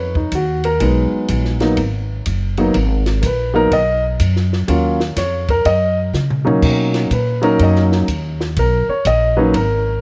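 A swing feel in four drives this cool, smoky jazz piano trio passage, cut from a longer piece, with a concert grand soloing up front throughout, its intimate tone carrying audible action noise, deep low notes and long sustain. A woody, pizzicato upright bass on steel strings sits just as close, while a compact cocktail kit with dark cymbals, a high-tuned snare and a tight kick stays dry and further back, entering at 0.2 seconds and slipping in a brief fill at 6.1 seconds. Light reverb gives everything the feel of a small room, as the harmony drifts through lush minor ninth chords before settling on a major seventh.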